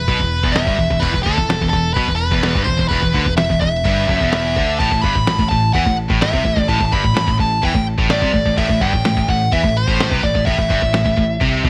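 A dry heavy metal cut from a longer piece, relentless and heavy in a straight 4/4, where a nasal, parked-wah lead guitar with overdrive and digital delay sings the melody up front over three picked riff guitars (a bright overdriven one, a high-gain distorted one and a very quiet, scooped, double-tracked one), a growly, punchy picked bass, and a muffled, compressed lo-fi sampler-style drum kit with a thumpy kick, medium-tuned snare and crash cymbal, moving from Em to A5 at 4.8 seconds.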